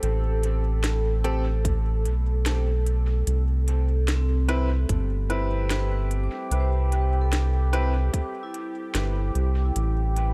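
Deep and meditative, this brief ambient dub excerpt rests on a round, saturated analog bass and a dark, detuned pad with chorus, while a bright upright piano drops echoing stabs until 7.9 seconds, a woody-snared electronic drum kit with crisp hats sits beneath a tight, up-front kick that enters at 1.6 seconds, and from 4.2 seconds a metallic, ringing vibraphone traces echoing arpeggios in the background over a swung pulse and dry, close sound.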